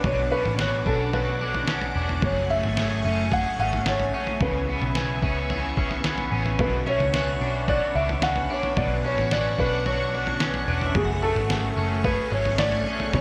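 A soft, felt-muted upright piano carries the melody through digital delay in this melancholic, haunting dream pop excerpt at 110 BPM in B dorian, set over a lush, sawtooth string machine, a twangy chorused guitar on arpeggios, a cranked stack guitar with harmonic tremolo in the background, a round, foam-muted picked bass, and a muffled, pitched-down sampler-style drum kit with a thumpy kick. The chords move from Bmadd9 through F#madd9 and C#m7 and back, and a shimmering FM bell with a warbling halo drifts in from 6.9 to 11.5 seconds. A wet plate reverb and bright 1980s-style digital production give the whole a polished sheen.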